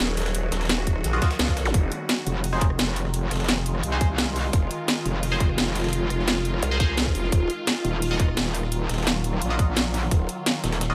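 A straight 4/4 groove drives this dark, mechanical piece of technical drum and bass: an overdriven drum and bass kit with a cracking snare, rim clicks and bright hats sits up front over a very quiet, gritty breakbeat sampler-style kit, with a tight, overdriven electronic kick arriving at 0.9 seconds. A growling, saturated bass with a formant filter pumps against the beat as it cuts in and out in bursts, while from 2.3 seconds a metallic, distorted FM wobble bass takes hold. Above them, a swarming, detuned drone with phaser and built-in reverb holds tense sustained chords moving between Ebmadd9 and Fm7, a nasal band-passed ring-modulated stab adds phased, delayed hits, and a brief electronic swell and zap flickers in the background, all within a digital ambience.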